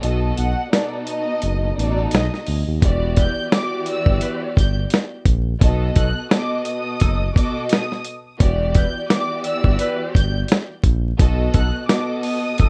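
Dark and tough, this boom-bap hip-hop excerpt rolls at 86 BPM in E minor with a swung 16th feel, built on a gritty, thumpy sampler-style drum kit up front with hi-hat, kick and snare, a smooth sawtooth-and-triangle synth bass, and a lush string section colored by cassette tape, joined at 0.4 seconds by a distant, expressive violin section with delay and at 3.2 seconds by mellow, vintage jazz-style horn stabs in the background, all wrapped in a rough home-demo mix with vinyl crackle and little reverb as the chords alternate between B7 and Em7.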